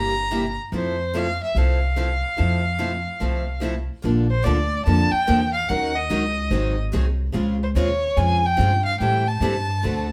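Lively and swinging, this excerpt of acoustic string swing in the jazz manouche style moves at 145 BPM in F major, its chords sliding from C7 and Fmaj7 through Bbmaj7 and Ebm7 to a lush Dbmaj9#11 before landing on Am7. Up front, a bowed violin carries the melody with a smooth, nasal vibrato, while a thumpy, woody pizzicato upright bass anchors the low end. Two picked steel-string parlour guitars accompany, one bright with audible finger squeak and the other sitting in the background with fresh strings, all captured as a band playing live in one room with moderate studio reverb.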